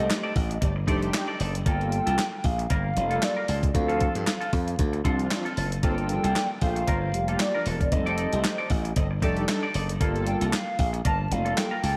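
A swung sixteenth-note groove at 115 BPM in 4/4 drives this late-night, danceable slice of early-eighties boogie funk in G minor, with a crisp 8-bit drum machine (thumpy kick, fat snare, hi-hat and handclaps) sitting up front beside a punchy, bright slap bass. Over chords moving through F13, Gm9 and Dm7, a hollow, woody clarinet-like synth lead carries the melody with vibrato, chorus and tape echo, while mellow synth brass holds a round, dark accompaniment and a clean, compressed semi-hollow guitar plays a riff through lush chorus. A nasal analog synth brass second line appears briefly at the opening and again from 5.8 to 9.4 seconds, and a moderate hall reverb gives the mix a big arena sound.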